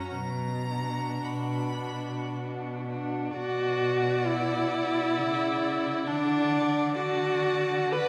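A spacious concert hall reverb, heard from further back in the room, frames this short passage cut from a slow, solemn and elegiac romantic movement for string quartet in B minor, moving freely in 3/4 at roughly 52-70 BPM. A clear, focused first violin carries the melody high above a second violin with expressive portamento, while the viola sits up front with a smooth top and the cello enters at 0.1 seconds to hold the bass, all four players bowing with vibrato. The music moves from its opening section into a second one at 3.4 seconds, and the harmony, resting on B minor, later shifts to a rootless Bm/D at 6.1 seconds.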